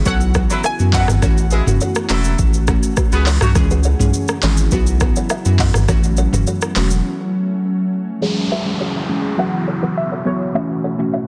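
A dense, heavily limited modern mix with light digital ambience frames this sunny, joyful afrobeats excerpt at 103 BPM, moving through C#m, Bsus4 and A6 chords. An up-front drum kit with deep kick, metallic hats, handclaps, rim clicks, shaker, toms and a gritty 12-bit sampler edge drives alongside a thick, saturated sub bass until both stop at 7.0 seconds for a short break, while a glassy, detuned wavetable pluck, a buzzing, woody kalimba riff with tape echo and an ethereal, airy background pad pumping under sidechain continue throughout. A distant, roomy horn section adds a second line early on, and a bright, round analog pluck carries the melody at the start and returns at 8.5 seconds as a filter sweep and an electronic downlifter shape the closing section.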